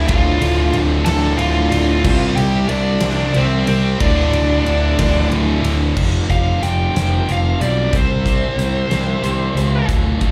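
Cut from a longer piece, this cathartic quiet-loud alternative rock opens on a dark, distorted bluesy lead guitar up front, over a fuzzy, up-front picked bass, a biting overdriven guitar riff, a distorted electric guitar riff in the background and a very quiet, double-tracked fuzz guitar riff, with a huge arena drum kit of fat snare, punchy kick and bright cymbals joining in a slow 6/8 at 61 BPM; the biting and fuzz riffs drop away at 6.0 s, where a slightly broken-up, lo-fi guitar through a small old amp adds lush chorused arpeggios beneath the lead solo as the chords move from Dm7, Csus2 and Dm to Fsus2 and C, the sound carrying the club reverb of a live gig heard through the venue's PA.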